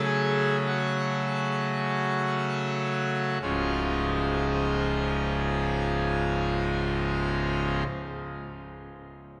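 A full pipe organ, brilliant and majestic with bright mixtures and baroque voicing, sounds up front as the solo voice in this solemn, grave excerpt of a classical, chorale-style piece in free time. It moves from an F#m/C# chord, slowing through the opening, to a C# chord at 3.4 seconds, spanning from the deep pedal register up to G#4 before the organ stops at 7.8 seconds. A cathedral reverb with a 6.1-second decay carries the sound on through the resonant space until 9.3 seconds.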